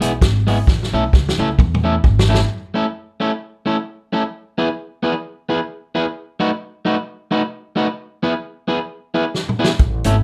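A lightly swung 132 BPM ska groove in A major opens this joyful, upbeat fragment of a longer piece, with a punchy-kicked vintage kit rolling through a fill and a woody pizzicato upright bass beneath a picked, slightly broken-up electric guitar up front, until bass and drums fall away by 2.5 seconds and the guitar carries the E and B7 changes alone in a moderate studio room before the drums return with another fill at 9.3 seconds and the bass rejoins at 9.8 seconds.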